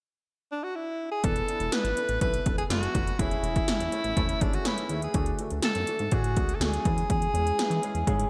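An up-front, bright alto saxophone carries the melody in this glossy, nostalgic 1980s-style pop excerpt at 123 BPM in E mixolydian, entering alone at 0.5 seconds with light vibrato before the band arrives at 1.2 seconds. Overdriven electronic pad drums with a punchy kick, gated snare and metallic hats sit forward alongside a retro, chorused synth bass mixing pulse and sawtooth tones with a filter pluck, while a natural-sounding baby grand piano, bathed in lush chorus, fills out chords moving from E7sus4 through Amaj7/E and D to C#m/E. A moderate plate reverb and gated reverb on the drums give the whole thing a shiny digital sheen.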